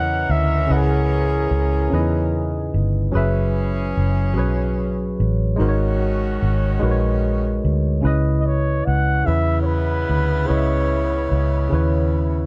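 Sultry and late-night, this slow six-eight R&B excerpt sways at 49 BPM in C# dorian, moving through C#m7, F#9sus4 and G#9sus4 before settling back on C#m7. A breathy, whispered flugelhorn carries the melody with light vibrato and a soft attack, its tape echo trailing behind phrases heard from 0.0 to 2.8 seconds and again from 8.4 seconds. Underneath, a barky tine electric piano, worn and slightly out of tune, sits up front through a combo amp, bathed in lush chorus as it holds the accompaniment throughout. A distant, roomy horn section punctuates with tight jazz-style stabs, while a foam-muted fingered electric bass gives a round, dark foundation at the front of the mix. Light reverb and studio ambience frame the whole.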